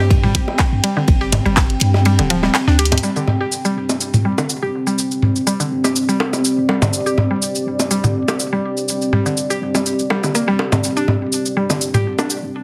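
A mallet-like synth pluck, a punchy sub bass and a deep, dark ambient pad open together on a Gsus4 chord in this clinical, cool fragment of minimal techno at 123 BPM in 4/4, with a light swing on the sixteenths. The woody, round pluck carries the riff up front, its FM tone edged with a noise layer and ring modulation and coloured by chorus, cassette tape and delay. Beneath it, the sine-based sub bass has a pitch-drop attack and tube saturation, and the moody pad spreads a detuned sawtooth unison with a sub octave, slow attack and long release through chorus and its own reverb. All three pulse with sidechain pumping. A layered electronic kick punches in at 0.1 s and stops at 1.7 s. Alongside it, a background studio kit adds a bright ride cymbal and a medium-tuned snare, with a drum fill at 2.8 s. Tape-warm electronic toms and bongos and a house kit of handclaps, bright hi-hats and shaker keep the groove moving up front to the end, all set in a short studio reverb under a heavily compressed, radio-like sound.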